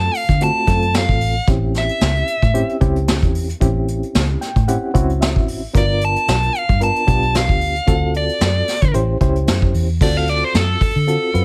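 A dark, overdriven lead guitar carries the melody up front and breaks into a solo at 10.0 seconds in this rollicking, soulful straight-eighth soul blues excerpt, backed by a bright, reedy electric piano with fast tremolo that adds a fill around 4.1 seconds, a round, foam-muted fingered electric bass, and a distant, roomy brushed drum kit with a tight kick and a rolled-off top, all moving through seventh-sharp-nine changes from D7#9 to A7#9 and G7#9 in a fairly dry mix.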